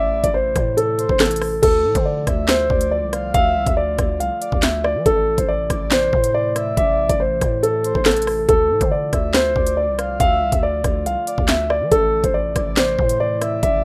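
A dry, rough home-demo sound frames this menacing, tense drill excerpt in D minor at 140 BPM with a half-time feel, where an up-front dark grand piano with audible action noise and delay carries the melody, a breathy, flute-like synth lead with chorus and vibrato adds a soft second line in the background, a warbling, lo-fi tape-like pad holds sustained chords, a growling, buzzy 808-style bass anchors the low end, and an electronic drill kit with knocking kick, sharp snare, crisp hi-hats, handclaps, rim clicks and crash enters at 0.2 seconds as the chords move between Am and Dm.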